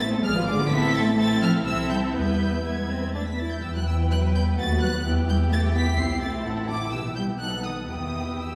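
A quick classical-period movement for string orchestra in 3/4, cut from a longer piece, moves with an urgent, stormy mood and a flexible rubato feel. A woody, dark first violin section carries the melody high above a rich, lush second violin line and a focused viola accompaniment, while a cello section with expressive portamento and an even, up-front double bass section anchor the bass. The sound is heard from further back in a wet scoring stage, the ensemble's vibrato blooming into the hall's reverb.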